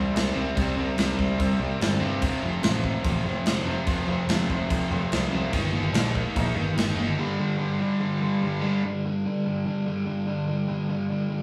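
Heard in a live-room mix bathed in a short, wet studio reverb, this energetic hard rock excerpt opens with the full band driving hard in a straight 4/4. Up front, a dark, overdriven semi-hollow guitar plays the riff. A second semi-hollow guitar, double-tracked and warm, plays the riff further back, and a bright, scooped high-gain guitar adds a distorted edge. Beneath them, an overdriven picked bass with a round, direct tone anchors the low end, while a gated 80s kit enters at 0.2 s with a tight kick, a medium-tuned snare and bright crash cymbals in an airy, polished stone room. The riff moves through C5, F, Eb/G and G5. The drums and bass fall away shortly before the other two guitars stop at 8.8 s, and the front semi-hollow guitar carries on alone until the cut at 11.4 s.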